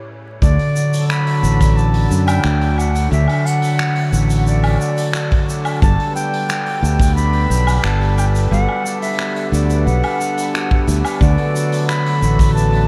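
Light reverb and a layer of vinyl crackle frame this pastoral, delicate folktronica excerpt in D major at 89 BPM, moving from D to Gmaj7 and back to D. An airy, reedy flute with tape echo carries the melody over ringing, fingerpicked concert harp arpeggios from 0.0 s, and at 0.4 s a breathing, nasal hand-pumped harmonium adds sustained chords while a bright, up-front fingered electric bass sets the low end. A punchy kick and a vintage brush kit with finger snaps, hi-hat, shaker and woodblock, both natural, small-room and rolled-off on top, keep a straight 4/4 pulse, with the kick stopping at 12.5 s.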